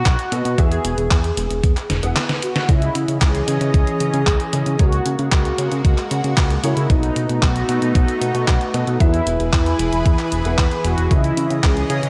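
Italo disco at 114 BPM in a straight 4/4, this danceable, nostalgic excerpt is cut from a longer piece and moves through chords such as B7, E and C#madd9. A mellow synth brass carries the melody between D#4 and G#4, its round, brassy sawtooth tone darkened by a filter sweep and colored with vibrato, chorus and tape echo. Beneath it, a fat analog bass with a nasal, detuned pluck and tube saturation holds the low end, while a grand piano plays short stabs in the background through ensemble chorus and tape echo. An overdriven, thumpy electronic kick sits up front with a large-room sound, joined by a detuned 8-bit drum machine supplying handclaps, hi-hat and a tape-softened snare, with a drum fill from 1.9 to 2.7 seconds. At 3.1 seconds a lush unison pad enters with bright, detuned sustained chords treated with chorus and phaser, and light digital reverb lends the mix a gentle sense of space.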